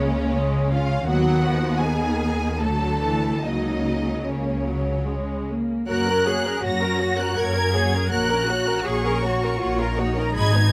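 A full string orchestra sounds together from the very start of this slow, romantic classical movement in F# major, moving in a rubato three-four at roughly 72-84 BPM. The first violins carry the lyrical melody with a warm, smooth, even tone, while a second violin section adds a clear, focused line beneath. Violas fill in the accompaniment with a lush sound, and the rich cellos join the double basses, which sit up front in the mix, to anchor the bass. Every section is bowed with vibrato, and the mood stays serene throughout. Close, detailed microphones and light reverb give the studio sound an intimate presence, and the harmony settles onto F# at 5.9 seconds as a new section begins.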